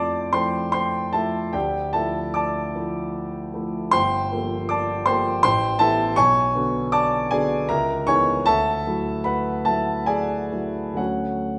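A rubato sway in 3/4 carries this hazy, luminous fragment of impressionist solo piano, where a warm concert grand with deep bass, open tone and long sustain sits up front in a wet recital hall, drifting through lush ninth chords from Fmaj7 to a closing Dmaj7 at 11.0 seconds.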